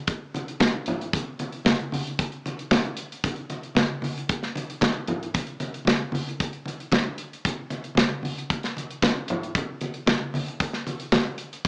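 With the small-speaker sound of a home cassette recording and a wet, short studio reverb, this danceable, driving disco excerpt at 114 BPM in a straight 4/4 opens at 0.1 seconds with an up-front, airy and polished acoustic drum kit of hi-hat, tight kick and medium-tuned snare carrying its own cassette-tape colour, joined at 0.3 seconds by low-tuned, thick-skinned congas that sit distant and quieter in a larger space.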